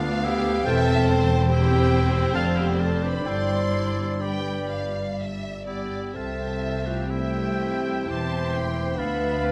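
A lush violin section carries the melody of this serene classical passage, its bowed line expressive with vibrato and a gentle attack, moving at a rubato 57-73 BPM in 3/4 and C major. A second violin section sits above it with a rich, even tone, while an airy flute, a dark clarinet with a smooth top and an oboe with light vibrato add further second lines. Violas and a mellow, very quiet bassoon fill out the accompaniment, and a vintage-sounding French horn section holds sustained chords. Cellos and an intense, clear double bass section anchor the low end, with the basses among the most prominent parts. At 0.7 s a tight, distant trombone section adds hushed sustained chords and a trumpet section begins its stabs in the background. The harmony settles from G onto C near 6.1 s, and close, detailed microphones capture the orchestra in a moderate recital hall reverb in this passage, cut from a longer piece.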